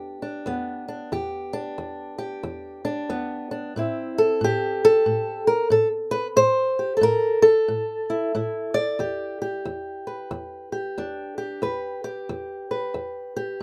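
Brooding and smoky, this short excerpt from a longer acoustic country blues piece moves with a light swing in four. A lone fingerpicked, ladder-braced acoustic guitar sits up front, its old strings giving a dark, woody, boxy voice as it moves from Em7 to Am7 at 3.8 seconds and back to Em7 at 9.0 seconds. A modest booth ambience keeps the sound close and dry.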